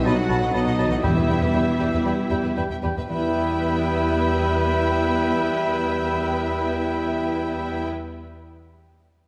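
Bathed in the wet reverb of a scoring stage, this stormy, urgent classical excerpt in a rubato 4/4 opens with the orchestra slowing through its first 3.1 seconds as the harmony moves from B7 to Em. Distant, lush violin sections carry the melody and a second line with intense vibrato, joined by an airy, hollow flute, a close-miked oboe, a very quiet clarinet and a mellow bassoon, while rich viola, cello and double bass sections fill the lower register. In the background, French horns hold sustained chords, a soft-edged trumpet section adds stabs, a ringing harp plays arpeggios, and articulate hard-mallet timpani enter at 1.0 seconds.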